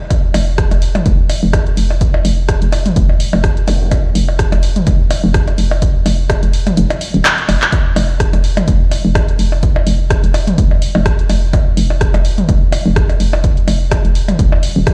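A hollow, knocking FM bass sits up front in this clinical, hypnotic minimal techno excerpt, its bouncy, mellow notes striking fast and decaying, thickened with tube saturation and sidechain pumping. Beneath it, a dry, punchy analog electronic kick drum anchors the 4/4 groove, joined by an analog drum machine supplying handclaps, hi-hat and rim clicks with a light swing on the sixteenths. Electronic percussion blips and toms, re-recorded in a small room, trail tape echo through the mix, and a brief electronic zap flickers in the background near 3.7 seconds. The kick drops out at 6.8 seconds, and a drum fill from 7.2 seconds leads it back in. The parts themselves carry little reverb, yet the whole track sounds as if it were played on a big sound system in a bare room, with a large studio reverb, which gives it a loud presence.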